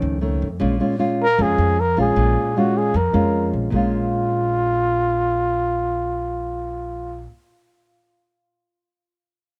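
A straight 4/4 bossa nova groove opens this wistful, smooth fragment of a longer piece, with a thumb-plucked classical nylon-string guitar and a woody, pizzicato upright bass on steel strings laying down the harmony from the start, moving from F7b13 to Bbm7. At 1.2 seconds a dark, breathy trumpet enters with the melody in a whispered, intimate jazz style, sitting up front as the solo voice with vibrato and a soft attack. The sound is dry and close, caught by detailed microphones that keep the guitar's warm tone present beside the trumpet.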